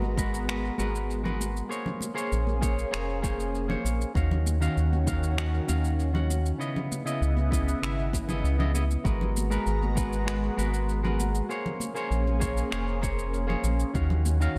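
A clean, bright semi-hollow electric guitar with tape echo opens this wistful sunset chillout excerpt at 98 BPM in G# minor, over a lush, detuned sawtooth pad with chorus and phaser and a round, dark analog bass sitting up front, all sounding from the start. An overdriven electronic kick and a layered shaker-and-finger-snap part join at 0.2 seconds, while high-tuned, hard-hand congas stay in the background. Minor ninth chords move from G#m9 through A#m9, D#m9 and C#m9 in a straight 4/4, with light reverb and digital ambience giving the mix an echo-heavy haze.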